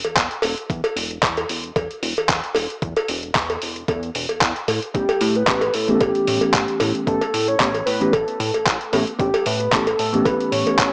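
A gritty, up-front dusty soul sampler-style drum kit with handclaps and hi-hat opens this sleek, sensual nu-disco excerpt at 113 BPM together with a saturated cowbell and a glossy, retro chorused synth bass that evolves through filter sweeps and a moving notch, all over a lightly swung 16th-note feel, and a thumpy electronic kick drum joins moments later. At 4.7 seconds the harmony settles on an A9 chord, and from 4.9 seconds a bell-like tine electric piano with analog chorus and sidechain pumping arrives alongside a round, detuned, octave-layered synth lead carrying vibrato, chorus and tape echo. A moderate plate reverb leaves the mix dreamy and soaked, with a small-speaker character.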